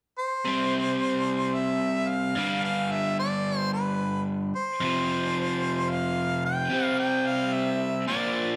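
Bathed in a moderate echo-chamber reverb, this short rock excerpt has a sunny, swaggering mood, set in a straight four-beat feel over a C, G, F5, C progression. A clear, close-miked harmonica carries the solo melody up front from 0.2 seconds, its light vibrato and scooped notes touched by slapback echo. A biting, double-tracked electric guitar enters at 0.4 seconds with a picked, overdriven riff that sits just as far forward.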